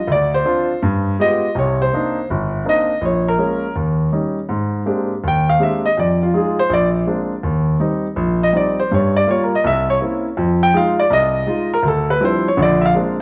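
Playful and relaxed, this short solo jazz excerpt swings along briskly in four, cut from a longer piece. A grand piano carries the whole passage alone from 0.0 to 13.2 seconds, its tone warm, natural and up front, ranging from deep bass notes to the upper middle of the keyboard. The harmony moves through rich jazz chords, from Dm7 and G7b9 into Cm9, then on through Abmaj9#11, Eb6 and Gm7b5 before closing on Bb9. A moderate large-studio reverb gives the piano some room around it. Over all of this sits the character of worn, old cassette tape, with a warbling pitch drift and a dulled top end that lend the recording a hazy, nostalgic quality.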